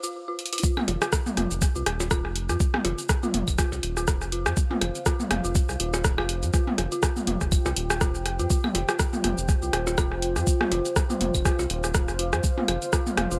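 An overdriven, knocking electronic kick sits up front in this quirky, cool minimal techno excerpt, arriving with the drop at 0.6 seconds after a brief drum fill at 0.4. Around it, a punchy analog drum machine supplies swung cabasa, hi-hat and rim click, a tape-toned click kit adds claves, blips, rim clicks and toms, and a round, ring-modulated analog bass pumps beneath from 0.9 seconds. An eerie, inharmonic FM bell riff and a moody, detuned pad sit further back, both carrying chorus and sidechain pumping, all within a light digital ambience.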